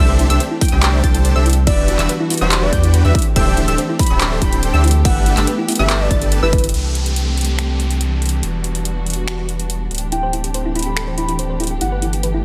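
A half-time 4/4 groove drives this bright, playful future bass clip, cut from a longer piece, opening straight into a drop. A punchy, overdriven electronic kick and a layered dance kit of metallic hi-hats, handclaps, finger snaps and crash cymbal push the first half, with a drum fill at 6.5 seconds, while a deep, thick sub bass sits up front and pumps with the sidechain like every melodic part. A huge, detuned supersaw riff and a lush, high unison pluck carry the drop alongside a round, tine-like thumb-piano pluck playing arpeggios in the background, the plucks trailing dub echo. A velvety, mellow lead with chorus and vibrato sings the melody above dark, woody studio strings that hold sustained chords under a low-pass filter. At 6.7 seconds the drop falls away to strings, bass and kit while an electronic downlifter sweeps through, before the lead and thumb-piano pluck return at 10.1 seconds over the same cycle of C69, Em9, D9sus4 and G69 chords in light digital reverb.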